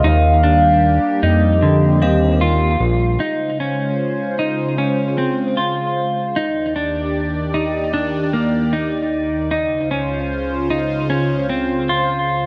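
Over a straight 4/4 pulse, this floating, dreamy dream pop fragment sets a swirling, phased analog pad and a clean, picked electric guitar with lush chorus and delay across the full 12.5 seconds, while a warbling, nostalgic lead with vibrato sounds only at the opening and a fat, saturated analog bass stops at 3.2 seconds, a faint inharmonic synth chime rings in the background from 2.0 seconds, and a moderate plate reverb gives the dark production its drifting space.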